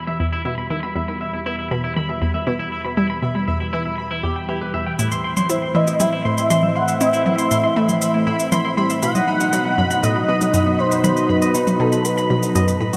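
Set to a straight 4/4 at 119 BPM, this expansive, hypnotic piece of sequencer-driven space music in E harmonic minor is cut from a longer work and bathed in a huge ambient reverb with an 8.5-second tail. A lush, thick unison pad fades in from the start with warbling, vintage sawtooth chords under chorus, while a round analog pluck riff of detuned sawtooth and square waves with a noise layer runs through chorus and tape echo. A clean, twangy electric guitar plays fingered, compressed arpeggios with tape echo, and a pulsing, tempo-synced triangle texture with its own reverb fades in from 1.0 s, sitting in the background. At 5.0 s overdriven electronic shaker and toms arrive, re-recorded in a small room and sent through tape echo, as the harmony moves from Em to Am before reaching B at 9.0 s. A smooth, dark sawtooth lead carries an expressive melody with vibrato from 5.5 s, coloured by ensemble chorus, cassette tape and tape echo.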